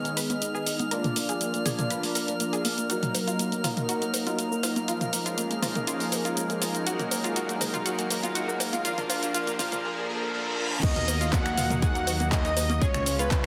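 Bittersweet and expansive, this progressive house excerpt in Eb minor at 121 BPM builds from a lush unison pad, a soft supersaw with 12-bit sampler grit and a filter sweep, an analog pluck's chorused, delayed arpeggios, and a glassy, drifting harmonics texture that ends at 9.8 s, all over an up-front pop drum kit of snaps, claps, shaker and hi-hat, with overdriven electronic congas, toms and bongos. Very quiet risers, a reverse cymbal and a downlifter lead into the drop at 10.8 s, where a layered electronic kick, a rumbling detuned saw bass, and a round, octave-layered synth lead with tape echo and vibrato arrive, shadowed by a dark, woody chamber violin section. Sidechain pumping runs through the pad, the supersaw, the pluck, the texture, the percussion, the bass and the violins, and the dense, heavily limited master is bathed in a wet digital room reverb.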